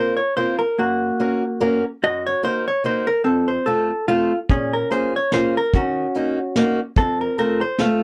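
Musette waltz in Bb minor at 145 BPM, this nostalgic, whirling cut from a longer piece swings its eighths in 3/4 while moving through chords such as Gb, Ebm7 and F. A dark, clean, compressed hollow-body electric guitar carries the picked melody up front, alongside a fingerpicked acoustic archtop whose bright fresh strings and audible finger squeak fill out the accompaniment. At 4.5 seconds a vintage brush kit enters with hi-hat, punchy kick and a medium-tuned snare, its rolled-off top and roomy small-room sound framed by light reverb.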